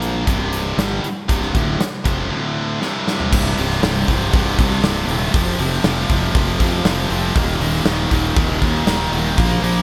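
A straight, driving 4/4 groove from a huge arena drum kit anchors this heavy hard rock clip, its punchy kick, medium-tuned snare, hi-hat, toms and crash cymbals ringing in a pumping hall sound, with a drum fill from 2.8 s leading into a new section at 3.3 s. Up front, a high-gain distorted guitar picks a bright riff, while a crunchy overdriven guitar plays a riff further back, warmed by a lush chorus, and a fingered electric bass adds growly fuzz underneath. The 1980s-style digital production keeps the reverb light.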